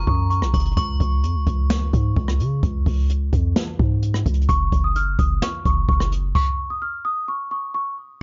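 A delicate celesta with soft felt hammers, a metallic, inharmonic FM bell carrying a second line through chorus and digital delay, and a deep, boomy 808-style bass open this wistful yet triumphant half-time trap excerpt, joined at 0.1 seconds by an up-front acoustic jazz kit played with brushes. The bell drops out at 2.6 seconds, and the sweet, delay-tinged celesta melody returns at 4.5 seconds over a rootless minor-seventh chord. The bass falls away at 6.3 seconds and the drums at 6.5 seconds as the stop arrives, leaving the celesta alone in a dark, dry mix.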